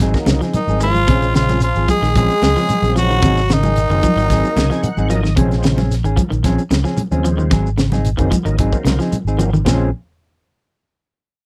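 A snippet from a longer afrobeat track opens with a slightly broken-up, twangy electric guitar picking arpeggios with slapback echo in the background, a dark, clean second guitar jabbing stabs, a growly, up-front fingered bass, a tight funk drum kit with a high-tuned snare, and a grainy shekere, joined almost at once by a thick, overdriven tonewheel organ with chorus vibrato and slow rotary speaker, and by damped, thin-skinned congas set further back. The groove is defiant and funky at 112 BPM in a straight 4/4, in Bb minor, swaying between Ab7 and Bbm9 chords. At 0.6 seconds a raspy, gritty tenor saxophone takes the melody up front, with a breathy, whispered trombone carrying a second line softly behind it until both fall away at 5.1 seconds. The organ adds a fill from 4.3 to 5.4 seconds, and the drums play a fill just before a new section begins at 9.7 seconds. The sound is dry and close, in the manner of a 1970s studio, with only light reverb.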